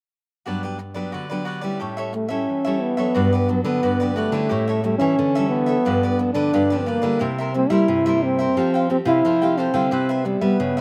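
A playful, lively samba in straight 4/4, taken from a longer piece and played in a dry outdoor setting with little reverb. Bright, crisp picked cavaquinho with a slapback echo and a fingerpicked nylon-string guitar open the music together at 0.5 seconds, the guitar up front with a full-bodied classical tone and an audible finger squeak. A mellow trombone takes the melody from 2.1 seconds, played solo and up front in a jazz style with a soft attack, light vibrato, scooped notes and a smooth top, also carrying a slapback echo. At 3.2 seconds a second nylon-string guitar joins on a deep, warm fingerpicked bass line as the music moves into a new section. The harmony moves from Gmaj7 and A7 through G7 and C7 to Fadd9 and Cmaj7.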